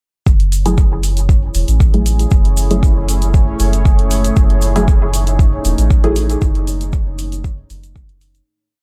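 A four-on-the-floor electronic kick sits up front at 117 BPM, with programmed closed and open hats, a grainy egg shaker in hand-played sixteenths tucked into the background, and a round, soft dub sub bass gliding through long notes beneath, all settling into a meditative, hypnotic dub techno groove in F# dorian from 0.3 seconds. Muted, detuned chord stabs with phaser and dub echo drift sparsely through the mix, moving one shape in parallel over an F#m9 harmony, while a moody sawtooth pad with chorus and reverb holds slow-attack chords and a resonant stepped-filter texture bubbles around a held high note. The pad, stabs and texture breathe with sidechain pumping in a dark digital ambience, and the whole short piece fades out from 5.7 seconds to its close at 8.5.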